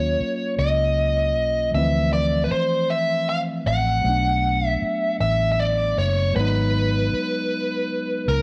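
A light reverb wraps this short, sultry R&B excerpt in a slow 6/8, cut from a longer piece and moving through yearning minor-ninth and minor-seventh chords. A bluesy, distorted lead guitar sits up front carrying the melody, while a barky tine electric piano, lightly overdriven through a combo amp, fills in the accompaniment beneath it. A vintage fingered electric bass, dark, round and foam-muted, anchors the low end throughout.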